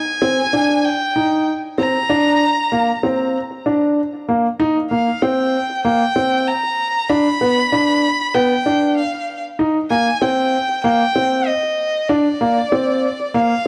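Electronica with an intimate, moving mood, cut from a longer piece in a straight 4/4 feel. A dark grand piano carries a low riff from 0.2 seconds, its mellow tone showing audible action noise and long sustain, with a delay trailing its notes. Above it, a single bowed violin sings the melody in a woody voice with vibrato, placed up front yet sounding distant, and a filter sweep shapes it during the opening build-up. The build-up pauses in a break at 3.3 seconds, and the drop arrives at 4.6 seconds, running to the end as the harmony moves from C7(no3) through G and Cm7 to Bbadd9. An echo chamber reverb wraps the sound in a wet space, and the production stays dark and warm throughout.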